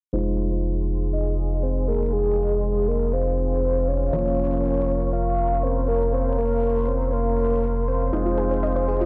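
A soft, round octave-layered synth lead carries the melody of this dreamy, emotional progressive house excerpt from 1.1 seconds, its dark tone dressed in chorus, vibrato and dub echo. A deep, saturated sub bass sits thick and up front, while a clear, vintage-sounding concert grand piano plays filtered stabs with dub echo and a lush, bright unison pad holds detuned chords under chorus and phaser as a filter sweep runs throughout. Metallic electronic hi-hat and tambourine stay in the background, and a gentle pluck adds arpeggios from 8.1 seconds as the harmony moves from F minor seventh to B-flat minor over F and back.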